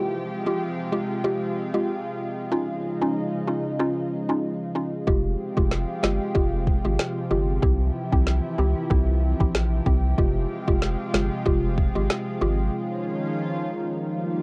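This dancehall excerpt, cut from a longer piece, moves at 94 BPM in F minor with a tough, bouncy feel and a light swing on the sixteenths. A lush, detuned unison pad holds sustained chords throughout, thick and warbling with a slow attack and a sidechain pump, alongside a woody, mallet-like synth pluck that plays mellow, decaying accompaniment through chorus, phaser and plate reverb. At 5.1 seconds a round analog bass enters, dark and up front, together with an electronic afro-pop drum kit built from a deep kick, a woody snare and rim clicks, colored by cassette tape. The harmony cycles through Fmadd9, Dbadd9 and C before the drums drop out at 12.3 seconds, followed by the pluck and then the bass, which falls away at 12.7 seconds for a short break that leaves the pad to hold on alone. The whole has the intimate, lightly reverberant character of a home recording on cassette, tuned slightly flat of standard pitch.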